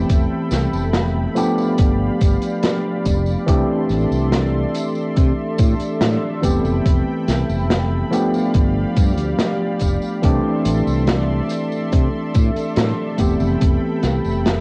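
A slow, straight 4/4 pulse at 71 BPM is set by a thumpy, sampler-style electronic kick and an open jazz kit whose hi-hat, medium-tuned snare and tambourine sit dark and rolled-off in a small room. This is a woozy, dreamy vaporwave passage in C major, cut from a longer piece, cycling through Fmaj9#11, G7 and C69 over about 14.6 seconds. A bright, clean tine electric piano sits up front in the accompaniment, coated in lush chorus, gritty 12-bit sampler texture, cassette tape and analog delay. Beneath it a round, mellow fretless electric bass carries the low end, while a thick, nasal sawtooth unison pad holds detuned chords high above with slow attack and long release, chorused and tape-softened. The whole passage has the light reverb and modest ambience of a home cassette recording, and the kick drops out at 13.8 seconds, shortly after the last Fmaj9#11 arrives.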